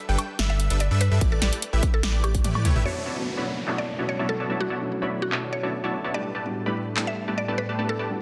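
Future bass at 146 BPM in a half-time 4/4 feel, this lush, playful excerpt opens on a drop where a punchy, detuned supersaw stab riff, filtered and given a cassette-tape character, drives the track up front alongside a deep, saturated sub bass and a big-room dance kit of punchy snare, metallic hats, handclaps, toms, woodblock and crash. An airy, dreamy lead sits in the background with chorused, vibrato-touched arpeggios, while a woody, round mallet-like synth pluck carries the melody with chorus and delay, and an electronic kick joins between 1.2 and 2.4 s before a drum fill. At 2.9 s the second section begins as the sub bass and lead drop out, a filter sweep moves over the drums, and an electronic downlifter descends through the mix. A soft, felt-muted upright piano with tape echo adds boxy, intimate accompaniment in the background, and a breathy, slow-blooming pad of sustained chords enters at 3.2 s, itself under a sweeping filter. 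Sidechain pumping runs through the stab, bass, lead, pluck, piano and pad, the harmony moves from G69 and A7sus4 to Bm11 and back, and a lush digital hall reverb frames the dense, heavily limited master.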